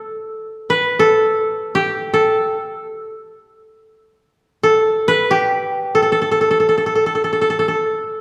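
A solo koto, plucked with fingerpicks, carries this brief 8.2-second passage of Japanese traditional chamber music, moving in free time within a narrow span from G4 to B4. The mood is austere and calm, the koto's woody, dry tone sitting up front in the mix. A moderate reverb, like that of a scoring stage, surrounds the instrument in a measured sense of space.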